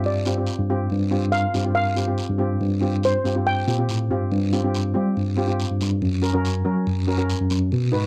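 A shimmering lead steel pan, played with soft rubber sticks, carries the tune until 3.9 s in this bouncy, sunny calypso excerpt at 141 BPM, over a metallic double-seconds pan accompaniment with a boxy small-room tone, a clean, mellow tine electric piano bass heard through its built-in speakers, and a raspy acoustic guiro, all in a dry, close 1970s-style studio sound that moves from Csus4/G to Gb at 6.0 s.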